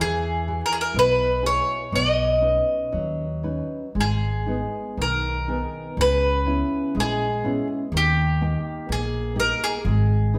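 Passionate and mournful, this fado-style ballad moves with a free, rubato feel in 2/4, as a bowl-back mandolin carries the melody up front with a bright, picked tone on its doubled strings. Beneath it, a classical nylon-string guitar fingerpicks a dark accompaniment with audible finger squeak, while a pizzicato upright bass on steel strings sits forward with a woody depth, all three playing together throughout. The band sounds live in one stone room with a wet reverb, and the harmony moves from Eadd9 through Badd9, G#m and C#m7 to D# before the chords drop out at 9.9 seconds.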